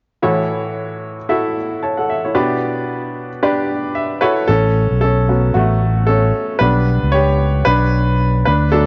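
Piano-driven pop with an uplifting, hopeful mood, moving at 113 BPM in 4/4 with a light swing on the sixteenths and centred in A mixolydian. A bright upright piano carries the accompaniment from the start, its brilliant, woody tone close and intimate, with audible action noise and a short sustain. The harmony moves between A6 and G/B, and a piano fill at 3.7 seconds leads into a solo passage for the piano from 4.5 seconds. At that point a fingered electric bass enters, punchy and amped, sitting up front in a low register. The whole recording carries the character of worn, warbling cassette tape, with drifting pitch and a muffled top end, set in a small room with light reverb. This is an excerpt from a longer piece.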